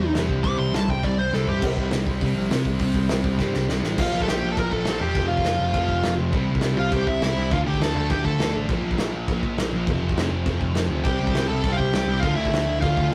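A dark, high-gain lead guitar sits up front in this energetic, upbeat punk rock excerpt, opening with a short solo that ends at 1.6 seconds, then returning with melody at 4.0 seconds and again at 11.0 seconds. Beneath it, two sludgy, double-tracked electric guitars grind out overdriven picked riffs throughout, one of them set further back in the mix. A bright, growly and punchy overdriven bass drives the low end with real bite. A loose indie drum kit sounds acoustic and mid-forward in a small room, with dark cymbals, a medium-tuned snare, a tight kick and a rolled-off top, and it throws in drum fills along the way. The straight 4/4 feel moves through chords of C, Bb, F and Dm, and the whole take carries the rough, tube-saturated character of a rehearsal-room recording with moderate reverb.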